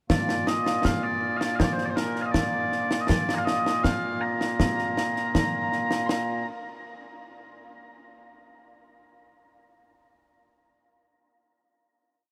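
This is a short piece of Scottish traditional pipe music in 2/4 with a straight, ceremonial and proud feel, and it runs as a complete piece in just a few seconds. Mellow small bagpipes carry the solo melody up front from 0.1 s to 6.4 s, their sweet, continuous tone colored with vibrato as they play a modal line full of ornaments across a range from Bb2 to C6. Concert snare drum and concert bass drum play alongside them over the same span, close and acoustic, with a marching snare pattern and bright cymbals. A moderate, huge ambient reverb with a long tail places the listener further back in the room, lending the performance a spacious, hall-like grandeur. After a single section, the piece settles onto a final note from 6.1 s to 7.6 s, which rings into the reverberant space.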